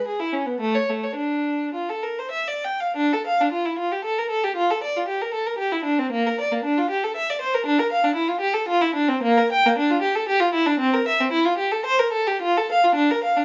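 Classical baroque-style suite movement for unaccompanied violin in 3/4, flowing and radiant, where a single bowed violin with a rich, focused tone and vibrato plays alone in a rubato feel from 0.0 to 13.4 seconds, sitting up front yet slightly distant in light reverb, in this excerpt cut from a longer piece.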